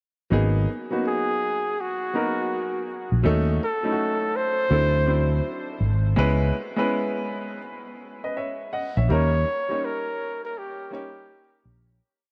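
A dreamy mix soaked in a huge ambient reverb wraps this short, cool and mellow jazz-hop piece in a spacious haze. Set in 4/4 with a swung sixteenth-note feel, it opens at 0.3 seconds with an upright piano of woody, vintage character pushing drop-2 chords with short sustain, dressed with grace notes and brief fills. Underneath, a fretless electric bass sits round, dark and punchy up front, carrying a syncopated line. From 1.1 seconds a flugelhorn takes the solo, its soft attack, light vibrato and scooped notes shaping a free, jazz-inflected melody touched with delay. The harmony moves from G#m9 through D#m7b5, D9 and C#m7 to D#7 as the piece fades out from 9.1 seconds.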